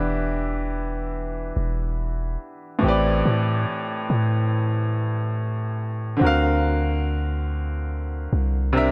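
A deep, boomy 808-style bass sits up front, its sine-based tone topped with a thin noise layer, a fast attack and a mellow, decaying tail that reaches down as low as E1. Beside it, a clear baby grand piano carries the accompaniment, ranging from A2 up to E#5 and also placed close in the mix. This is a short cut from a longer contemporary R&B piece in A minor, moving at a slow 71 BPM in a straight 4/4 with a sensual, moody feel. The harmony opens on Em7, shifts to Am11 at 2.8 seconds, and turns to D7alt at 6.2 seconds. A moderate plate reverb with a long 2.7-second decay soaks the whole mix and gives it a dreamy haze.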